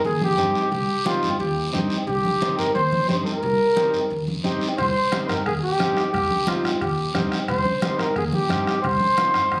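A straight 4/4 cumbia pulse at 177 BPM drives this passionate short excerpt in C minor, resting on a single Cm chord throughout. Raspy guiro and thick-skinned congas played with soft hands run from the start, joined almost at once by a woody pizzicato upright bass holding the low register between C2 and G2. A mellow, clean vintage combo organ enters at 0.4 seconds as accompaniment, and a soft-beatered bombo sits in the background from 4.8 seconds. Up front, a smooth-topped, punchy flugelhorn carries the solo melody between F4 and C5 with light vibrato and plate reverb, its pop-style phrasing giving the piece its heat. Near the close, at 9.2 seconds, a transistor combo organ fill breaks in, all heard with the club-like reverb of a phone recording made in the room.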